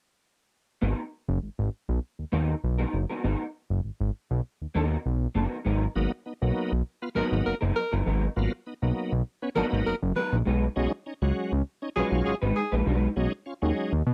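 Funk with a driving, cool mood, cut from a longer piece and captured in a dry, close 1970s-style studio sound, built on a fat, detuned sawtooth analog bass and a dark, slightly broken-up electric guitar through a small old amp with ensemble chorus, joined at 6.0 seconds by shouting, lightly overdriven tonewheel organ stabs with chorus vibrato and a slow rotary speaker, and at 7.2 seconds by a warm, smooth jazz-style tenor saxophone second line with vibrato, over G#m9 moving to B6.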